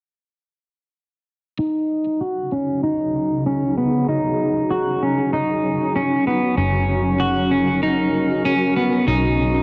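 Haunting, hazy dream pop at 96 BPM in Eb minor, cut from a longer piece, where a clean, compressed electric guitar sits up front with picked arpeggios from 1.6 s through subtle chorus and tape echo, a blurred, granular cloud pad with slow attack and its own built-in reverb holds mellow sustained chords from 2.4 s, and a dark, round, foam-muted picked electric bass arrives at 6.6 s, all under a filter sweep, moving from Ebm7 to Gb to B in a moderate hall ambience with gritty transformer saturation.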